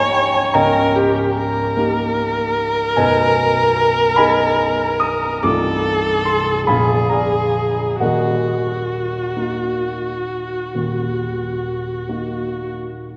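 A single bowed viola carries the melody up front, its rich, focused tone marked by vibrato and a smooth top as it sings between Gb4 and Db5 before falling silent at 12.7 seconds. Beneath it, a warm grand piano with short sustain supplies the accompaniment across a range from deep Bb0 to Eb6, sounding on alone until 13.2 seconds. This romantic classical duo sits in Eb minor and moves in a slow, rubato 12/8 at roughly 43-50 BPM by the dotted quarter, giving the passage a yearning, melancholic feel. The harmony travels from Eb7 over Db through Abm, F7 and Bb7b9 before settling on Ebm at 8.0 seconds. A wet church reverb with a long 3.4-second decay surrounds the performance, and the clip is cut from a longer piece.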